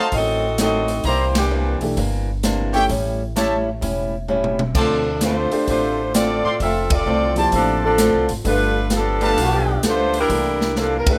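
A mellow, up-front saxophone section carries the melody in this joyful big band swing excerpt, sounding briefly at the start and returning at 4.8 seconds to sing through to the end, at 130 BPM with a strong triplet swing on the eighth notes. A bright trumpet section with vibrato punches in stabs until 9.8 seconds, and the whole band hits accents at 1.3, 6.8 and 11.0 seconds. Underneath, a picked, boxy old acoustic guitar with aged strings and an intimate concert grand piano with audible action noise fill in the harmony, moving from a diminished opening through dominant ninth and minor seventh chords. A thumpy, gut-strung pizzicato upright bass holds down the low end while an airy, polished drum kit with a punchy kick and medium-tuned snare swings on ride, hi-hat and crash, adding fills along the way. The horns, guitar and piano carry plate reverb inside a small, wet room, giving the whole excerpt the rough, lively feel of a home demo.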